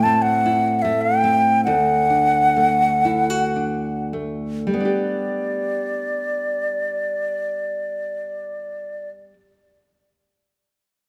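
Wistful and nostalgic, this brief fragment of a Celtic slow air in 3/4 drifts in free rubato, slowing through its opening 4.7 seconds as an airy, woody flute with vibrato and a crisp attack carries the melody up front over a bright, fingerpicked nylon-string guitar with fresh strings and audible finger squeak, moving from Am to D to G in a moderate concert-hall reverb.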